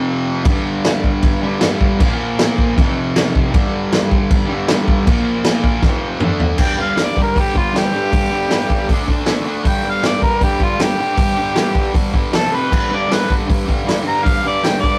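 A rough rehearsal-room recording with a moderate small-room reverb frames this raw, rowdy garage rock excerpt at 157 BPM in a straight 4/4, built on power-chord changes around G5, Bb5, F5 and D5. A bright, double-tracked fuzz guitar riff opens at 0.0 seconds, quickly joined by an up-front vintage drum kit with a punchy kick, medium-tuned snare, toms, hi-hat and crash and a rolled-off top, which plays a fill from 5.8 seconds. At 6.6 seconds an amplified, overdriven harmonica takes a gritty solo with light vibrato and tongue slaps that runs to the end of the cut.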